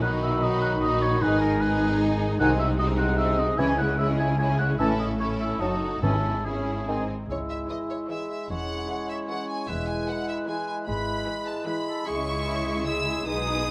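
In a brisk, straight 3/4 at 150 BPM, this lively, graceful classical-period movement in C# minor sets a lush, vibrato-rich violin section on the melody, while a mellow oboe, clarinet and second violins weave supporting lines and a pure silver flute adds a soft-edged line until 7.1 s. Bassoon and a portamento-tinged viola section fill the accompaniment, a clear French horn section holds sustained chords, and cellos and focused double basses anchor the bass, with very quiet, dry calf-head timpani appearing from 1.2 to 6.6 s. Captured with close, detailed microphones and light reverb, the excerpt moves from its opening section into a second one at 7.3 s, settling back on C# minor.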